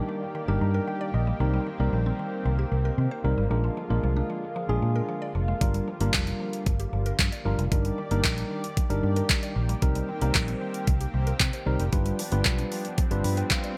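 Bright 1980s-style digital production with light reverb frames this bittersweet, driving dance-pop excerpt in C minor at 114 BPM, where a worn, slightly out-of-tune tine electric piano through a combo amp, a lush, airy unison pad and a woody FM mallet-like pluck arpeggiating with chorus and delay in the background all pump against the sidechain. A dark, foam-muted fingered electric bass sits up front from 0.5 seconds, and a knocking pop drum kit of kick, warm hats and handclaps, overdriven and re-recorded in a small room, arrives at 5.6 seconds. The electric piano adds short fills, faint electronic downlifter and swell effects mark the edges, and the chords move from Ebmaj7 through Cm7 and Bb7 to a closing G7.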